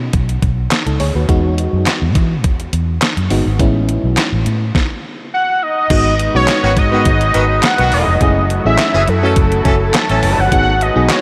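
A dreamy mix soaked in a huge ambient reverb gives this slick, danceable early-eighties boogie funk cut a hazy glow. A thumpy, tape-warm 8-bit drum machine with a fat snare, handclaps, hi-hat and crash sits up front beside a dark, round, foam-muted fingered electric bass. A glassy FM electric piano with a bell-like, warbling attack and chorus fills in the accompaniment. During a stop in the harmony from 4.8 to 5.9 seconds, a detuned sawtooth analog lead with vibrato and portamento enters to take the melody up front, and from 5.9 seconds a shimmering pulse-width pad holds sustained chords in the background. A punchy warm horn section with light vibrato adds a second line from 6.6 to 10.5 seconds, over chords moving from E major ninth and A major ninth to G sharp minor seventh and F sharp minor ninth.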